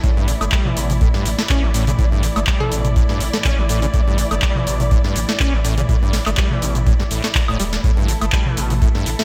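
A bright 1980s-style digital production with light reverb frames this playful, raw acid house excerpt at 123 BPM in 4/4, with a 54% swing on the 16ths over an A5 chord. A dry, deep electronic kick joins a booming analog drum machine of crisp snare, metallic hats, cabasa, handclaps, toms and woodblock under gated reverb, while a squelchy, resonant sawtooth acid bass riff with analog chorus and digital delay rides over a round sine sub bass with tube saturation and sidechain pumping. Dark, veiled con sordino chamber strings hold sustained, pumping chords throughout, and a hollow, detuned square-wave pluck sounds a single A4 in the background at 2.6 seconds.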